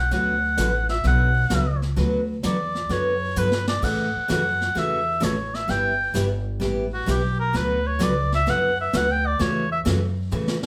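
Western swing country with a down-home, swinging feel, this short cut puts a clear, classical-style oboe up front, carrying the melody with light vibrato as a solo across the whole passage. A woody, thumpy pizzicato upright bass sits up front as well, while a bright, full-bodied picked steel-string acoustic guitar fills out the accompaniment. A vintage brush drum kit with a punchy kick and rolled-off top plays fills at 3.4 and 10.3 seconds, and the band sounds live in one room, wrapped in a wet studio reverb.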